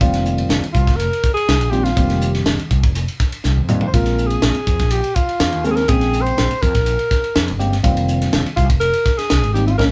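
Slick and funky, this excerpt of electric jazz fusion moves at 123 BPM in a straight 4/4, with a tight funk drum kit up front, its high-tuned snare and tight kick driving a drum fill at 3.4 s, while a fretless electric bass anchors the low end and a clean tine electric piano with phaser comps through F9sus4 and Bbm7 beneath a warm, subtone alto saxophone solo with a soft attack that enters at 0.7 s, all captured as a band playing live in one room with moderate studio ambience.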